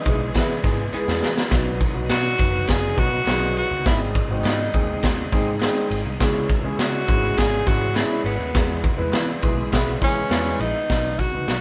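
A breathy tenor saxophone with scooped notes and jazz-style vibrato carries the melody up front in this uplifting, uptempo 1960s-style soul cut at 102 BPM in B major, driven by gritty, saturated garage drums with a high-tuned snare and boomy kick, a dark, foam-muted picked electric bass, long-sustaining grand piano accompaniment, very quiet shouting tonewheel organ chords with key click and slow rotary speaker, faint vintage tambourine and handclaps, and a mellow, distant horn section that surfaces only briefly at 0.1 and 9.1 seconds.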